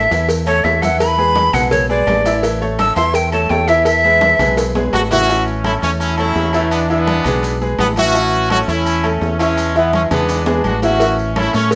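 A moderately reverberant mix opens on a breathy, chiffy flute carrying the melody up front over brilliant, woody piano, round fingered electric bass, ringing agogo bells and timbales, thin-skinned congas, a tight cowbell and grainy, distant maracas, with the flute stopping at 4.6 seconds and a bright trumpet section taking over the tune from 4.9 seconds in this joyful, danceable 168 BPM salsa fragment in A major.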